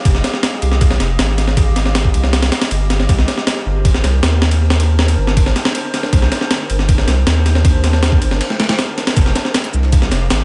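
Heavy with echo, light digital reverb and a dark top end that stops short of 10.5 kHz, this atmospheric, brooding drum and bass and jungle excerpt runs at 158 BPM in F minor. A deep, thick, saturated sine sub bass sits up front beside a gritty, compressed sampler-style breakbeat kit with a thumpy kick, high-tuned snare and ride cymbal, re-recorded in a small room, placed up front and soaked in dub echo. After a break at 8.4 s, a very quiet, pitched-up, tape-warm second kit adds hi-hat, shaker and a medium-tuned snare from 9.2 s.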